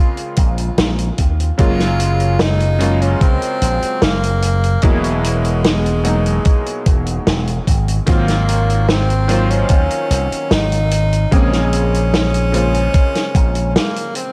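Vaporwave at 74 BPM with a woozy, nostalgic mood, this excerpt features a clear tenor saxophone melody with tape echo over a clangy, chorused electric grand piano roughened by 12-bit sampler grit, a bright, punchy slap bass with an envelope filter, a thumpy, up-front electronic kick, and a vintage drum kit's hi-hat and warm, medium-tuned snare, all set in a small room with light reverb as the chords move from Bbm9 through Gbmaj7, Emaj9#11 and Ab13 before a brief break at 13.8 seconds.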